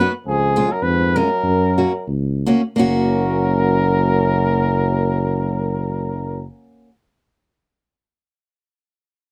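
A boxy, picked old ladder-braced acoustic guitar sits up front in this jolly, festive alpine dance-band excerpt in F# major and swung 2/4, slowing down between 0.2 and 2.8 seconds within a tempo of 82-105 BPM, while a flugelhorn carries the melody with vibrato, a distant, roomy euphonium adds a second line with light vibrato, and a dark, smooth-topped tuba holds the bass, all closely and dryly recorded as the chords move from C# to F#.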